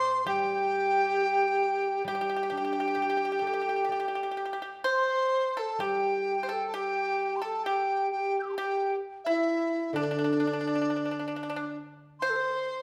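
Chinese traditional chamber music, graceful and festive, unfolds in a rubato 4/4 at 66 BPM in the G zhi mode, with this excerpt moving into a new section at 5.8 s. A hollow, pure-toned dizi with a crisp attack carries the melody up front, above a reedy large dizi with vibrato and a soft, airy attack. A bright, percussive, fingerpicked pipa adds a dry second line, and a quieter, silvery guzheng rings beneath as accompaniment, the ensemble set in the lingering reverb of a recital hall.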